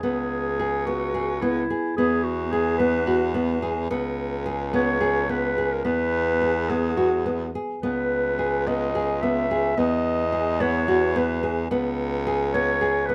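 Playful and shimmering, this contemporary chamber piece moves in an uneven 7/8 metre at 217 BPM counted in eighths, with a straight feel and tuning set to A4 = 442 Hz. A mellow clarinet carries the melody between E4 and E5 in a classical style, its tone set back in a roomy space. Beneath it, a dark nylon-string guitar plays fingerpicked classical arpeggios from B3 to G#4, with the occasional finger squeak audible. A breathy baritone saxophone holds the bass line, low between C#2 and E2, in a pop style with vibrato and a smooth top end. All three instruments play throughout the 13.1-second fragment, cut from a longer piece, while the harmony circles through C#m7, E, C#5 and Emaj7. Close, detailed microphones and light reverb give the trio an intimate, clear sound.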